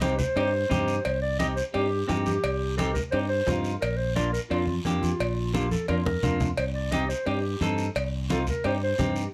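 A mellow, classical-style clarinet carries the melody from the opening of this danceable, passionate cumbia fragment, backed by a clean, picked hollow-body electric guitar and a warm, up-front fingered bass. Bright, low-tuned congas struck with hard hands sit close and dry beside a raspy guiro, while a ringing cowbell and timbales join at 0.4 seconds and a drum fill arrives at 5.5 seconds. Light reverb gives the whole a gentle sense of space.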